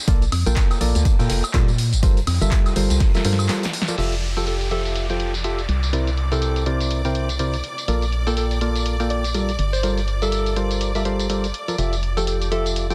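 Piano house at 123 BPM in F major, euphoric and feel-good, with a swung groove, opening on a dark, hollow organ stab riff with chorus, cassette-tape colour and tape echo, riding over an up-front, percussive FM bass, both pumping against the sidechain, while a punchy analog kick drives until 3.1 seconds alongside a filtered drum machine of snare, claps, hats, tambourine, woodblock and crash, plus a faint, rolled-off garage kit that stops at 4.0 seconds after a drum fill and break. At 4.0 seconds a lush, vibrato-rich violin section enters with sustained chords and an electronic downlifter sweeps through, and from 4.4 seconds a mellow, breathy alto saxophone sings a jazz-style melody with scooped notes and tape echo from the background. Chords move through Bbmaj7, Gm11, Fmaj9 and C9 under a dense, heavily limited modern master with light small-room reverb, the clip cut from a longer piece.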